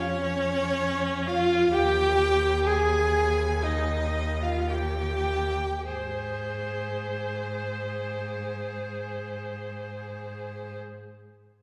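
From the first moment, a string quartet plays a serene, rubato romantic slow movement in Ab major at 49-69 BPM, with a warm, expressive first violin singing the melody with vibrato and portamento over a clear, even second violin line, a focused viola accompaniment and a rich, bowed cello bass, the viola and cello set up front, slowing through the opening 5.9 seconds before settling on Ab, all bathed in the reverberant glow of a church or concert hall.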